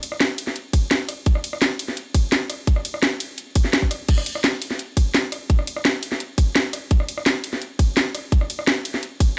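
A drum and bass kit opens this soulful, melancholic drum and bass cut at 170 BPM, its cracking snare and bright hi-hats joined by crash, ride and rim clicks, all with a small-room character. At 0.7 seconds a tight, tape-warm electronic kick drum enters, carrying the sound of a large room. Both layered, produced parts sit up front in a dry mix with little reverb, in straight 4/4 time.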